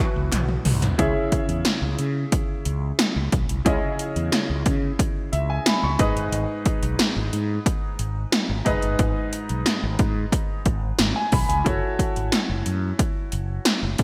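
Straight 4/4 at 90 BPM in C# minor drives this urgent, dramatic 1980s-style pop excerpt, where up-front, overdriven electronic pad drums open with a fill, bringing a punchy kick, metallic hats, and a snare and toms in gated reverb; a round, dark fretless electric bass sits beside them while a clear grand piano, treated with lush chorus, carries the chords from C#m through G#m to F#m7; a detuned sawtooth analog pad with a soft warble sounds in the background only until 1.0 s, and hollow group handclaps appear briefly at the start and return at 12.3 s, all within a moderate hall reverb and a bright digital sheen.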